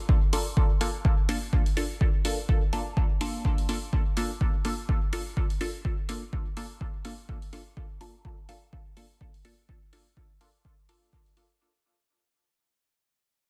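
Meditative and deep, this dub techno excerpt moves at 125 BPM in 4/4 with a light swing on the sixteenths, resting on a single Bbmaj7 chord and fading out across its full length. A punchy, up-front electronic kick with studio reverb anchors the groove beside a quieter layered hi-hat. Sitting beneath the kick, a muted, detuned sawtooth-and-square chord stab with a fast filter pluck is colored by phaser, sidechain pumping and dub echo, all inside a dense, heavily limited modern master.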